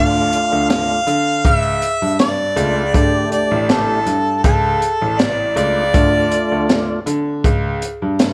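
A mellow harmonica opens with a jazz-style solo over a tonewheel organ turning through a slow rotary speaker and a bright grand piano holding the bass on a D minor chord, and a gritty, saturated breakbeat kit enters at 0.3 seconds in this brooding, smoky straight-eighth soul blues excerpt at 80 BPM in D harmonic minor. The harmonica's soft attack, light vibrato and scooped notes sound distant and roomy, the organ is full and clean with audible key click, and the piano is brilliant, worn and short in sustain. The drums sound from a small, dark room with a punchy kick, a high-tuned snare and a rolled-off top, and once the harmonica and organ stop at 7.0 seconds, piano and drums carry on to 8.3 seconds under light reverb.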